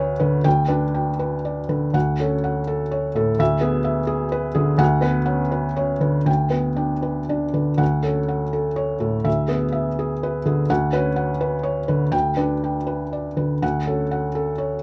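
In a rubato 3/4 lilt at 116-129 BPM, this tender, peaceful neoclassical minimalist piano excerpt in D major features a solo felt-muted upright piano, soft and intimate with audible action noise, sitting up front in light reverb as it spans D2 to G5 and twice cycles through G/D, Dmaj7, E7/D and Bmadd9/D over the full 14.8 seconds.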